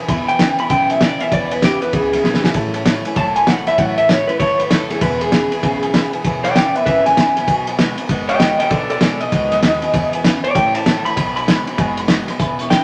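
Rockabilly in E major at a swung 195 BPM, upbeat and rollicking, this snippet of a longer piece is led by a bright, twangy, slightly broken-up electric guitar solo through a small old amp with spring reverb, while a warm, compressed second electric guitar plays a low riff up front, a dark, boxy upright piano with audible action noise and a very quiet, fresh-stringed steel-string acoustic guitar fill out the accompaniment, a woody, thumpy pizzicato upright bass sits behind, and a cloth-damped, muffled drum kit with a fat snare and dark cymbals drives it all, adding a fill at 2.2 seconds over chords moving through E6, A6 and B6.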